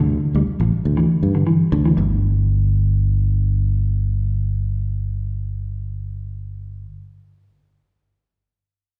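A mellow, dark-toned electric guitar and a fingered electric bass open this funky, joyful afrobeat fragment together, the guitar playing clean fingered arpeggios over a Dsus2 chord, lush with chorus and a slapback echo. Beneath it, the bass sits up front with a punchy, direct and amped sound. The harmony drops away at 2.0 seconds, the guitar stops just after at 2.1 seconds, and the bass carries on alone until 6.8 seconds. The straight, even groove keeps the mood upbeat, and the two instruments share equal prominence while both play. The performance comes from a live gig heard through the venue's sound system, with a light touch of recital-hall reverb around it, and it is cut from a longer piece.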